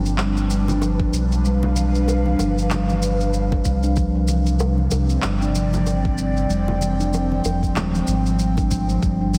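A round, dark analog bass pumps up front beneath an airy, detuned pad with chorus while a pure-toned steel tongue drum ripples through delayed arpeggios in this hypnotic, meditative organic downtempo cut at 95 BPM with a light 16th-note swing, as produced electronic shaker and handclaps start almost at once, soft ringing congas and bongos join in the background at 0.7 seconds and a deep electronic kick arrives at 1.0 seconds, all moving from G7 to Fmadd9 at 6.5 seconds inside a lush hall reverb and a heavily compressed, radio-like sound.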